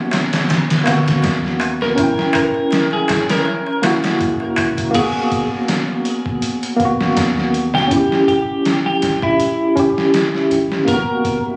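A brooding, melancholic trip hop excerpt at 81 BPM in G# minor opens on a clean tine electric piano with tremolo and tape echo, played up front through a combo amp over rootless minor-ninth chords, while a very quiet, reversed, detuned swelling texture drifts beneath until 5.0 seconds. A muffled, pitched-down sampler-style drum kit with a thumpy kick and swung sixteenths joins alongside a crisp, metal-shell darbuka in the background that stops at 4.9 seconds, and a deep, round 808-style bass enters at 1.1 seconds. A bright, twangy twelve-string electric guitar carries the melody with 12-bit sampler grit and tape echo, and the whole mix has a lo-fi, phone-recorded quality with vinyl crackle, light reverb and a dulled top end.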